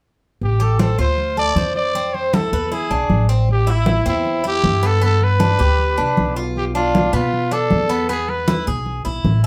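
Latin Cuban son and guajira in A minor at 156 BPM, sultry and danceable, this short cut from a longer piece sets a raspy, growling trumpet melody up front over a woody, thumpy pizzicato upright bass and damped, thick-skinned congas that sound compressed and saturated. A bright, metallic Cuban tres with double strings picks arpeggios from 0.6 s, while the harmony moves from Am7 through Dm7, Fmaj7 and E7 before a second passage at 3.5 s turns toward G, Bdim and E. The trumpet drops out at 8.7 s, and the whole group sits further back in a wet studio room.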